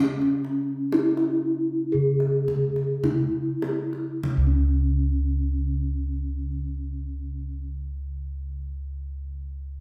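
A slow, straight 4/4 pulse between 47 and 67 BPM eases down over the first 4.3 seconds of this stately Javanese gamelan fragment, cut from a longer piece. Up front, a mellow bronze metallophone struck with padded disc mallets carries the melody, its paired tuning producing shimmering beats in a boxy small-room tone, while round, soft bossed gongs with padded beaters sound the bass beneath. A tight, distant kendang, played with hard hands, joins from 0.2 to 4.8 seconds, and the ensemble sits in a moderate recital-hall reverb.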